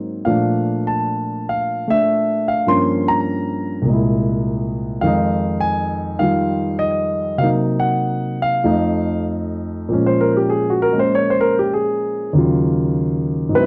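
A dark, mellow concert grand piano opens this cool, swinging solo jazz passage in F minor, moving at 100 BPM in 4/4 with a loose, rubato swing and ranging from deep bass notes up into the upper register. Its harmony drifts through rich extended chords such as Bbmaj7, C7b13 and Fm9 before shifting to B-flat minor at 9.9 seconds, where Bbm7 and Ebm9 colour the closing bars. The sound is dry and close in a 1970s studio manner, with the piano placed up front and touched by a slapback echo.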